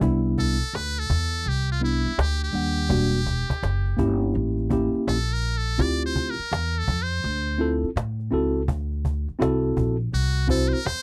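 A trumpet with a metal mute leads this nocturnal, mellow jazz-hop piece from 0.4 seconds, playing a forceful, jazz-style solo with a buzzy, thin and brilliant tone, light vibrato and scooped notes, close-miked and up front. Beneath it, a worn, slightly out-of-tune tine electric piano supplies clean, direct accompaniment until 10.8 seconds. A woody pizzicato upright bass with steel strings sits up front in the low register. A snappy cajon with snares, played with soft hands, keeps a swung hip hop groove. The harmony moves from Cmaj9 through Em7b5, A7b9 and Dm11 to D9 in a dry, close studio sound with a 1970s character, in a short section cut from a longer piece.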